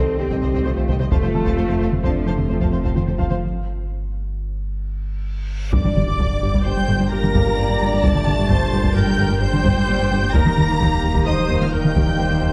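Dark, reverberant scoring-stage sound frames this vast, brooding hybrid orchestral and electronic film cue in 5/4, where a lush, distant violin section carries the melody over a focused second violin line, a smooth viola accompaniment and a background cello section, with a very quiet double bass section, a pure sine sub bass and a rubbery, nasal square-wave bass riff underneath, sustained chords from a vintage French horn section, a mellow trombone section and an airy, breathy pad, soft round pluck arpeggios, a clear baby grand piano texture that stops at 10.4 seconds, and heavy-stick taiko drums, with a break at 3.4 seconds leading into a huge reverse cymbal at 5.5 seconds and an impact at 5.7 seconds.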